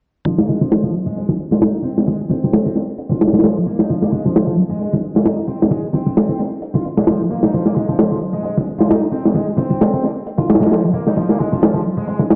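Gritty and raw, this breakbeat excerpt runs at 132 BPM in F minor with a swung sixteenth-note feel. A crunchy, saturated acoustic breakbeat kit sits up front with a punchy kick, medium-tuned snare and dark, rolled-off top, while a faint, metallic electronic hi-hat layer hides beneath it. A bright, double-tracked, high-gain distorted guitar riff spanning F3 to F4 carries tube saturation and dub echo, and the whole piece sounds as if played on a big sound system in a bare stone room with a lush hall reverb.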